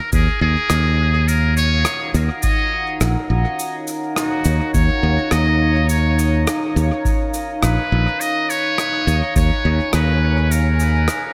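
Ambient dub in Eb minor at 104 BPM, this short, meditative piece cut from a longer work moves with a gentle 16th-note swing and a spacious feel, resting on Ebm7 before shifting to Bbm7 at 8.2 seconds. A muted trumpet with a metal mute carries the melody up front from the start, its buzzy, thin tone touched with vibrato and trailed by dub echo. Beneath it, a bright, growly fingered electric bass sits close and direct with tube saturation, while a deep, dark pad enters at 1.1 seconds with slow-attack sustained chords, its detuned, warbling sawtooth character thickened by chorus and its own reverb. The drums pair a dry, tape-warm electronic kick, which stops at 9.5 seconds, with a soft cabasa and rim click heard in a big room and sent through dub echo. A light studio reverb ties the mix together, leaving plenty of air around the trumpet line.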